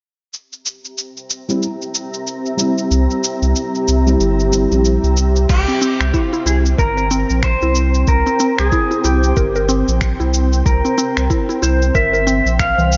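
A clean, twangy lap steel guitar carries the melody up front from 5.5 s, its slide and volume swells trailing digital delay and shimmer reverb over meditative, mystical organic downtempo at 93 BPM with a swung sixteenth feel, cut from a longer piece. A gritty, tape-dusted sampler drum kit of cabasa, crash cymbal and finger snaps opens on a C7 chord, joined by a cloudy, detuned granular pad, a felt-muted upright piano with audible action noise that plays only until 5.5 s, and a round sine sub bass pumping under the sidechain from 2.9 s. The later section adds a deep electronic kick and a woody, chorused FM mallet pluck spinning arpeggios, all set in a moderate concert-hall reverb with a dark, rolled-off top end.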